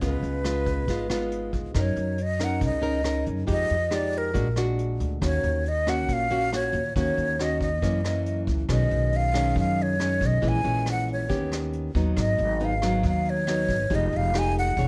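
Light reverb gives this melancholic, smooth bossa nova a soft, slightly open sound, cut from a longer piece in Eb minor at 138 BPM in a straight 4/4. A fingerpicked nylon-string guitar sits up front with a classical, warm tone, carrying the accompaniment through rich chords such as Db7, Fm9, Bb7b13 and Ebm7. Beneath it, a pizzicato upright bass with steel strings adds a woody low end, while a vintage brush drum kit, recorded naturally in a small room, supplies hi-hat, rim click and a punchy kick with a rolled-off top. From 0.1 s a silver concert flute carries the melody, its breathy, mellow voice heard close and up front with vibrato, tongued notes and a slightly unsteady quality. Around 8.7 s the music moves into a new section, with the harmony passing through B69, Bbm7b5, Eb7b13 and Abm7 before returning to Fm9.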